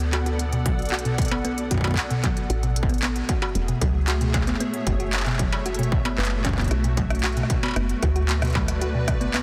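A melancholic, eerie IDM excerpt at 114 BPM in B dorian opens on a blurred granular cloud pad with 12-bit sampler grit and sidechain pumping, a woody, round FM bass and an industrial kit of handclaps, smooth hats, rim clicks and struck metal through digital delay, before a tine-like, chorused thumb-piano synth pluck arpeggiates from 0.1 seconds and a distorted, tape-warm electronic kick arrives at 0.7 seconds, all over Bm7 and Amaj7 in a dense, heavily limited mix.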